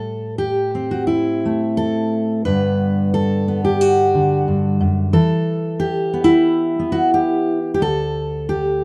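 Light reverb surrounds a dark, full-bodied jumbo steel-string acoustic guitar, fingerpicked up front as the only instrument across this 8.8-second fragment of a longer folk piece. In G major at 89 BPM in 4/4 with a rubato feel, the hopeful, pastoral passage spans D2 to B4 and moves through Am, Gmaj7 and Em before settling on G5/D at 7.8 seconds.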